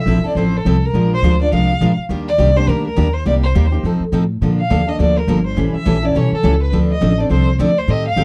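A bowed violin and a pizzicato upright bass open together at 0.0 seconds, with a picked steel-string acoustic guitar joining at 0.1 seconds in this brisk, virtuosic stretch of acoustic string swing in the jazz manouche style. The tempo is a driving 208 BPM in 4/4 with a swinging eighth-note feel, and the passage is cut from a longer piece. A single violinist carries the melody with vibrato and portamento, sounding expressive and slightly distant in a range from A4 to F5. Up front, the gut-string bass is woody, dark and thumpy, while the dreadnought guitar supplies warm, picked accompaniment close to the listener. The harmony moves from Fmaj7 through Bb7, Ebmaj7 and Cm7–F7 to Bbmaj7, then A7 and Dm7, all heard in a dry, close 1970s-style studio sound with light reverb.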